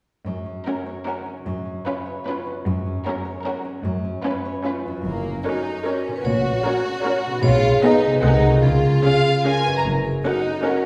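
Magical and mischievous, this whimsical film cue in a lilting waltz metre opens at 0.3 s with an up-front, ringing concert harp playing fingerpicked arpeggios over a cello section that carries the bass line with expressive portamento. A violin section soon takes the melody, sounding focused yet distant, while a second, lush violin line and a smooth, even viola section fill in the accompaniment close by. The opening phrase rocks back and forth between two chords, and at 5.1 s the second section begins, with a bowed double bass section deepening the low end. At 5.5 s a vibraphone struck with hard mallets joins the melody, its metallic tone shimmering with fast motor vibrato in a boxy small-room sound. The harmony then climbs through a short chord progression before settling home, and the strings, with their vibrato, bloom in a wet recital-hall reverb as this fragment of a longer piece breaks off.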